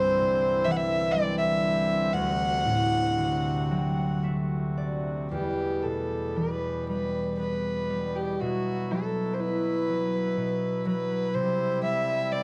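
Longing and mournful, this Celtic slow air in E minor drifts in a rubato 3/4 at around 56-63 BPM, with a single dark, woody fiddle carrying the melody up front with light vibrato and a smooth top, a ringing fingerpicked concert harp accompanying and adding a fill from 3.2 to 5.3 seconds, and a reedy, nasal hand-pumped harmonium breathing sustained chords beneath them in a dry, close 1970s-style studio recording.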